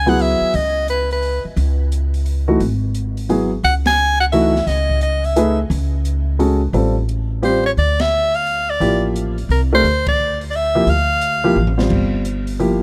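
Searching and spiritual, this modal jazz excerpt swings in 3/4 at 174 BPM. A bright, close-miked soprano saxophone carries the vibrato-laden melody in a brief opening phrase and again from 3.6 s, over woody pizzicato upright bass with steel strings, a polished, present upright piano, and a small-room drum kit set back with dark cymbals, a high-tuned snare and a boomy kick. The dry band hits shared accents as the harmony settles into D minor from 7.8 s, and a short drum fill at 11.6 s leads to a closing Gm11.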